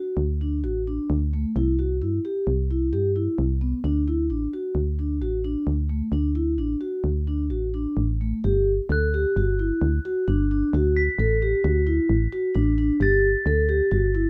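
Mellow, ringing vibraphone arpeggios played with soft mallets open this shimmering, restless piece of contemporary chamber music in 5/4, joined almost at once by a punchy, round digital FM bass up front, and at 8.9 seconds a dark, bell-like glockenspiel adds a smooth high texture, with the ensemble sitting in light reverb.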